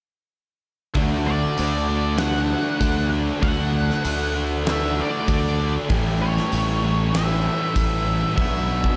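This short excerpt of dreamy, wistful shoegaze and dream pop rock opens at 0.9 seconds with a huge arena drum kit, its fat snare and punchy kick ringing in a hall, alongside an overdriven semi-hollow guitar riff trailed by reverse reverb and a very quiet, thick fuzz guitar playing its own riff. At a straight 97 BPM in 4/4 and D major, a bright, double-tracked overdriven electric guitar joins in the background at 1.0 seconds. It arrives with a growly fingered bass, fuzzed, overdriven and up front. A dark octave-fuzz lead guitar carries the melody high above from 1.3 seconds, colored by distortion and tape echo. A jingly tambourine sits close but low in the mix. The chords move from D to A7 and then to Bm as the passage is cut off, with the overall mix kept dry.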